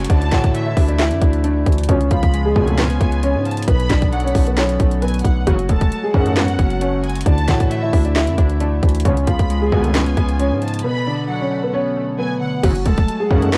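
Brooding and eerie, this half-time trap hip hop excerpt at 134 BPM in F# minor sets a dark, mellow concert grand piano melody over a growling, buzzy 808-style bass and an up-front trap kit with a hard-clipped kick, sharp snare, metallic hi-hats, handclaps and crash. A lush studio violin section carries a second line through tape echo. Behind them sit glassy digital keys with chorus, a clear woodwind section holding sustained chords, and, from 1.9 seconds, edgy sync-sweep polysynth stabs with a nasal sweep, after a very quiet downlifter opens the piece. The sound is dry and gritty with a cassette-tape character, cycling through Dsus2, C#7, Bm7 and F#madd9, with a break at 10.8 seconds.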